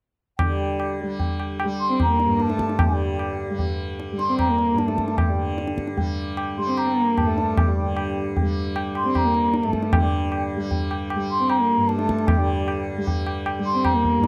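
Set in a straight 3/4 at 152 BPM, this solemn, meditative Hindustani piece in raga kafi on G opens with low-tuned, ringing tabla sitting up front over a buzzing, shimmering tanpura drone, as a hollow bamboo bansuri with a soft attack and vibrato carries the melody from a distant place from the very start. A dark, woody bowed sarangi joins almost at once with a second line, gliding with portamento over its sympathetic strings. The close 1970s-style studio sound is dry with light reverb, and the music moves into a new section at 9.9 seconds.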